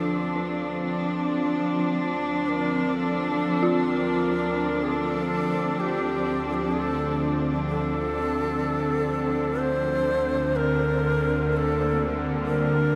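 Dark ambient drone in D minor at 63 BPM, dark and desolate, cut from a longer piece. A tense, string-like drone fades in low beneath an earthy cello section that sits up front with sustained chords before fading out, while a breathy, reedy shakuhachi fades in with a bamboo tone, vibrato and delay on its melody. An eerie, inharmonic FM bell warbles through very quiet arpeggios until 10.6 seconds, where the harmony moves from Dm to Gmadd9/D, all set in a huge, wet reverb.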